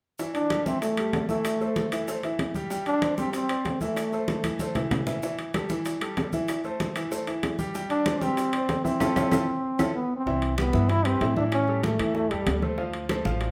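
A clear, live-in-one-room sound with a moderate large-studio reverb opens this sunny, danceable salsa excerpt at a brisk 191 BPM in straight 4/4. Up front, a smooth concert grand piano with a vintage character and deep low end carries the accompaniment through chords such as Emadd11, Gsus4 and Fmaj7. A punchy trombone with light vibrato takes the solo melody in pop style, playing two phrases and resting between them. Damped, low-tuned congas with a thick skin, round bongos set softly in the background, and ringing metal-shelled timbales heard close and dry drive the rhythm, with very quiet woody claves and distant, grainy maracas that drop out at 9.9 seconds. Drum fills and a band accent lead into a new section at 10.3 seconds, where a dark, thumpy pizzicato upright bass with gut strings enters up front beneath Cmaj7, A7 and Dm7.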